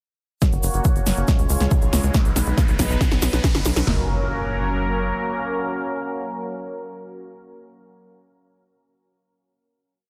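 A straight four-on-the-floor pulse from a punchy, tape-warm analog drum machine drives this short, soaring uplifting trance piece, joined by an overdriven big-room kit's crisp hats and snare, a grainy egg shaker in the background and a rolling, sidechain-pumped sequencer bass, while a detuned, airy supersaw pad pumps beneath a drum-fill build and a riser from 1.4 seconds that lead into a final sustained chord at 3.9 seconds, with an impact following, all set in a digital ambience.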